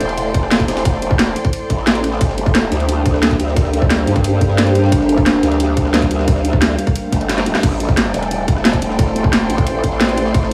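A tight, overdriven electronic kick drives this dark, mechanical drum and bass excerpt at 177 BPM in 4/4, with a cracking snare, bright hi-hats, crash and rim clicks up front, while a very quiet, gritty, pitched-up breakbeat layer of ride and snare sits underneath and a drum fill lands just before 7.6 seconds alongside a brief electronic swell. An aggressive, growling bass with a saturated, wobbling formant character pumps against the beat beneath a deep, moody pad of detuned, wave-folded sustained chords. Bowed chamber strings played sul tasto hover in the background as the harmony moves from Am7 to Gm and back in A phrygian under light reverb.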